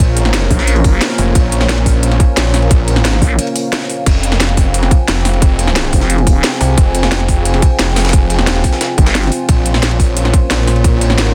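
A dense, heavily limited modern master in a digital ambience frames this aggressive, tense slice of dark technical drum and bass, cut from a longer piece and running at 177 BPM in 4/4 with a straight feel in F minor. Up front, a snarling distorted saw bass growls on detuned unison sawtooth, square and sine layers with a resonant moving notch and overdrive, while a nasal vowel-sweep wobble bass cuts in for short bursts, first around 0.5 seconds, its formant filter and chorus giving a saturated, wobbling edge. A tight, tape-toned electronic kick leads the drums, layered with a produced kit of cracking snare, crisp hats and crash, and a gritty, compressed breakbeat sampler kit with a high-tuned snare, ride and high-passed cymbals sits in the background. Underneath, a moody analog pad holds sustained chords with slow attack, sub octave and chorus, and a full-bodied, mellow ambient pad adds depth with its built-in reverb, both pumping against the sidechain. 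The harmony moves from Bbm to Fm after a brief break at 3.4 seconds, returning to Bbm at 9.5 seconds.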